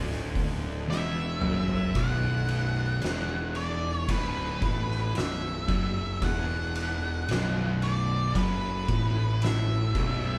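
Two thick fuzz guitars and a round, overdriven picked bass open this brooding, ominous stoner-doom excerpt at a crawling 56 BPM in B minor, with a fat-snared, punchy-kicked oversized low-tuned drum kit up front from 0.1 seconds, whose fill arrives alongside a dark, octave-fuzz lead guitar melody at 0.9 seconds, all captured as a band playing live in one room with light reverb.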